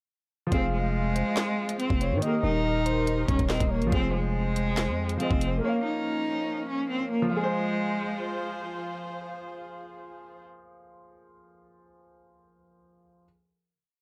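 Cold and tense, this half-time drill hip hop piece in F minor at 141 BPM sets a clear, vibrato-laden bowed cello loop over held, spread piano chords and a warm sul tasto chamber string pad, while a breathy flute-like synth lead adds a sparse chorused counter-melody with digital delay, and a growling 808 bass with pitch slides plays alongside an up-front drill kit of knocking kick, clap-layered snare and skipping hi-hat rolls until about 5.5 seconds; the cello fades by 8.6 seconds and the strings by 10.4, so the piano rings out last to 13.3 seconds in light reverb.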